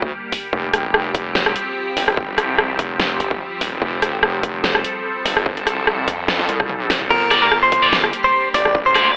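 A half-time groove at 146 BPM with a light 16th-note swing drives this heavy, menacing wobble dubstep excerpt, as a punchy, tape-toned electronic kick and an up-front dubstep kit with a huge snare, bright hats, rim clicks, toms and crash cymbal push through a drum fill at 6.3 seconds. Underneath, a saturated square-and-sine wobble bass with chorus and overdrive is joined at 2.0 seconds by a snarling, detuned sawtooth bass with a moving notch, distortion and overdrive, while an evolving wavetable pad with ring modulation, phaser, ensemble chorus and 12-bit grit pumps in the background over Gm and Fsus2. At 7.1 seconds a clean, picked electric guitar melody steps forward, followed by scooped, double-tracked high-gain guitar stabs, all inside a light digital ambience filtered to a telephone-like tone.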